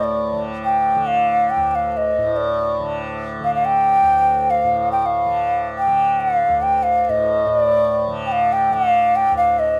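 A small, moderately reverberant room frames this short introspective, longing excerpt of Indian classical music in raga Bhairavi on D, moving at 141 BPM in 3/4 with a straight feel. Up front, a hollow bamboo bansuri carries the melody between D5 and G5 in pure, tongued phrases coloured with vibrato, while a softly plucked tanpura sits much lower in the mix, its buzzing, shimmering drone spanning D2 to D3 throughout. The music moves into a new section at 7.5 s and runs to 9.8 s.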